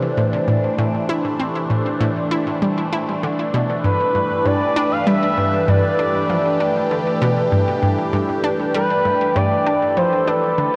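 A bright, round analog pluck riff opens this mysterious, hypnotic slice of ambient, sequencer-driven space music at 98 BPM alongside a swirling, evolving phased pad sustaining chords over Am and G, while from 3.8 s a smooth, mellow portamento lead carries a vibrato-laden melody, all of it bathed in huge, wet ambient reverb and the worn, warbling pitch drift of old cassette tape.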